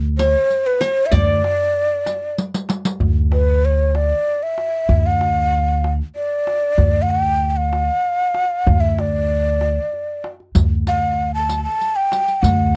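A breathy, vibrato-laden ney carries the festive melody up front in this Arabic maqam ensemble piece in D maqam rast at 64 BPM in a straight 6/8, over a woody, dark pizzicato upright bass holding D2, a deep clay-shell darbuka and a bright-edged qanun second line heard only until 2.3 seconds, while a jingling riq drops out after a drum fill at 2.4 seconds and returns at 10.6 seconds, the whole captured in a dry, close 1970s-style studio sound.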